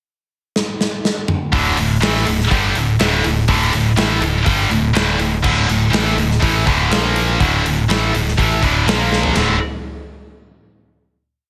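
Set in a light reverb, this short hard rock piece is driving and menacing at 123 BPM in D minor. A big-room acoustic drum kit with a punchy kick and a medium-tuned snare opens with a fill at 0.6 seconds. At 1.5 seconds, a distorted, double-tracked high-gain guitar takes up a power-chord riff moving between D5 and Bb5, doubled by a growly picked electric bass in driving eighth notes, before the piece lands on a final D5 chord at 9.3 seconds.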